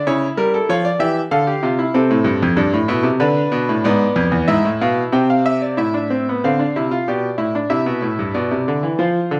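A moderate reverb from a large studio surrounds a bright, up-front concert grand piano with deep bass, heard alone from 0.0 to 9.4 seconds in this brief cut from a longer piece. It is a stately, elegant baroque-style fugue in three voices, set in D minor at 94 BPM in 3/4 with a straight feel and tuned to A4 = 437 Hz. Its range runs from E2 to G5, and at 5.8 seconds a new section settles on D minor over A before moving through G and C.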